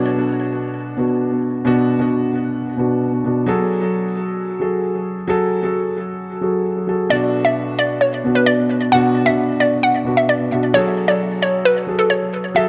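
A dark, mellow concert grand piano opens this menacing, hard-hitting half-time hip hop excerpt alone through a break, its deep bass filtered and trailed by tape echo as it moves between Bm and F#madd9, until a hollow, bouncy, detuned square-wave pluck with a noisy edge, chorus, filtering and tape echo enters up front at 7.1 seconds to carry the melody, all set in a moderate spring reverb within an echo-heavy mix.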